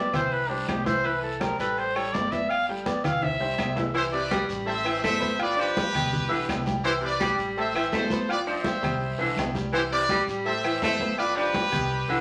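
A reverberant studio sound frames this sunny, joyful salsa in C major at 166 BPM, taken from a longer piece. A warm, distant trumpet with vibrato solos over clear baby grand piano chords, thumpy gut-string upright bass, ringing congas, raspy guiro, very quiet woody claves, and agogo bells and timbales in the background, until a drum fill at 3.2 seconds leads into the next passage. From 3.9 seconds a roomy, punchy baritone saxophone adds a second line, and from 4.0 seconds a brilliant, present trumpet section takes the melody over a cycle of Cadd9, Am7 and G7.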